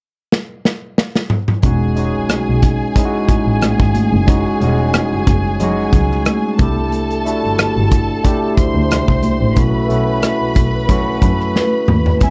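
Smooth and romantic, this lush 1970s-style soul excerpt moves at 91 BPM in E major with a light sixteenth-note swing, opening on a punchy acoustic drum kit fill before a dark, woody bowed double bass, very quiet high-tuned congas, and a barky, overdriven tine electric piano with phaser arrive at 1.6 seconds over chords of Emaj13, C6 and B7sus4. A warm studio violin section carries the second line in the upper register, while a mellow vibraphone with soft mallets and slow motor vibrato enters with the melody only at 11.6 seconds, as the drums close on another fill. The mix is dry with little reverb, keeping the kit and the gritty electric piano up front.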